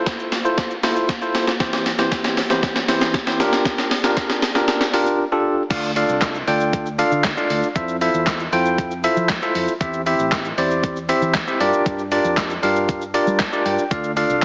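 A straight 4/4 pulse at 117 BPM drives this bittersweet yet confident dance-pop excerpt in D minor, cut from a longer piece. A gated 80s digital drum machine sits up front with a thumpy kick, gated reverb snare, handclaps, hi-hat, shaker and crash cymbal, its overdriven, sampler-style sound re-recorded in a small room. It runs a drum fill through the opening build-up alongside a bell-like tine electric piano, whose bright, clean, direct tone pumps with sidechain over Fmaj7, C/E and Gm7. At the drop at 5.7 seconds, a vintage muted fingered electric bass enters, dark, round and punchy with a foam-muted, amped tone, also pumping with the sidechain as the progression moves through Dm, Fmaj7, C and Gm7 before landing back on Dm. The electric piano adds a short fill at 13.1 seconds. A moderate plate reverb surrounds the mix, which carries a heavily compressed, AM-radio character.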